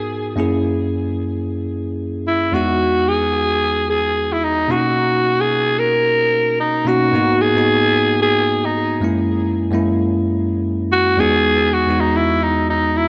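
Over a relaxed, lightly swung sixteenth-note amapiano groove, a growling, breathy alto saxophone sings a raspy, vibrato-laden pop-style solo line through tape echo, while a bright, bell-like tine electric piano sits up front with clean ninth-chord accompaniment, all of it bathed in lush hall reverb and the worn, warbling pitch drift of old cassette tape in this short cut from a longer piece.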